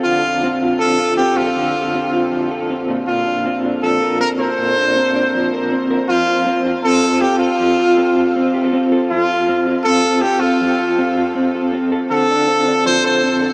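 A straight 4/4 pulse at 159 BPM drives this bright, youthful indie pop excerpt in F major, where a slightly broken-up, lo-fi electric guitar through a small old amp picks arpeggios with tremolo and delay beneath a clear pop-style trumpet melody with light vibrato, both parts up front over Dm7, Bbadd9 and F chords in a dreamy mix soaked in huge ambient reverb.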